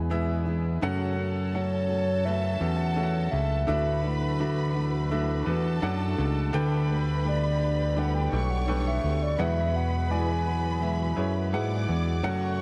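A fat, saturated analog bass sits up front in this hopeful, dreamy piano-driven pop excerpt at 84 BPM in 4/4, under a woody upright piano, a fingerpicked steel-string acoustic guitar riff, a warbling unison pad holding sustained chords, and a hollow clarinet-like synth lead with vibrato, chorus and tape echo that carries the melody until 11.5 seconds, while a distant bowed violin section enters at 0.8 seconds with an expressive second line, all moving through E, F#m, Dadd9, Gadd9/D and Eadd9 in a lush hall reverb.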